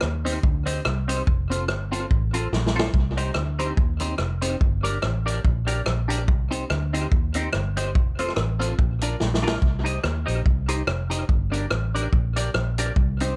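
A swung, bouncy ska rhythm drives this short, energetic and mischievous clip, with the drum kit sitting up front in a studio-room sound built from a punchy kick, a medium-tuned snare, rim clicks and hi-hat, its warm, rolled-off top colored by tape echo. Underneath, a vintage muted electric bass, played with the fingers, gives a dark, round, foam-muted tone through an amp and stays prominent in the mix. A clean electric guitar supplies the accompaniment in a bright, picked and compressed voice, colored by a phaser and set lower than the rhythm section. The harmony circles around C minor, moving through F, G minor and B-flat before returning home. Drum fills at 2.5 and 9.2 seconds mark the turns of the phrase, and a light reverb ties the three parts together across the whole clip.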